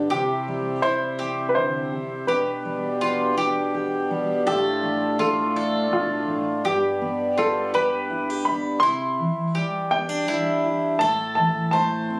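Captured on a phone in the room with moderate studio reverb and compression, this hopeful, gentle acoustic folk passage in 3/4 puts a woody, slightly detuned upright piano melody up front over a full-bodied, fingerpicked jumbo steel-string guitar with fresh strings and bright, double-strung bowl-back mandolin arpeggios, while a reedy, breathing hand-pumped harmonium holds sustained chords until it stops at 8.8 s.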